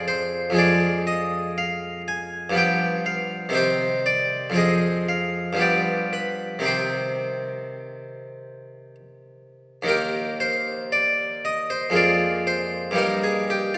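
Radiant and flowing, this short extract from a longer baroque-style suite movement in triple time unfolds with a gently elastic rubato at a slow, stately pace. A solo harpsichord carries the entire performance from start to finish, its plucked, brilliant Italian-style tone sitting mid-forward and up front, with octave strings adding shimmer across a range that stretches from deep bass notes to bright upper tones. The harmony begins in a minor-key world, circling through F minor, G7 and C minor, before brightening into E-flat major at 9.9 seconds. That turn lends the closing moments a lifted, open character as the music moves through B-flat seventh and back toward E-flat. The instrument rings within a wet church acoustic whose long reverberant tail lets each plucked chord hang and blend in the space.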